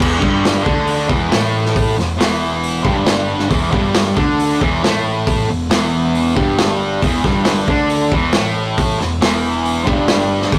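Garage rock at 137 BPM with a swaggering, raw mood, this excerpt from a longer piece sets an up-front, double-tracked fuzz guitar riff over an E5 chord against a gritty, punchy breakbeat kit with dark cymbals and a round, overdriven fingered bass sitting in the background, all captured with rough rehearsal-room saturation.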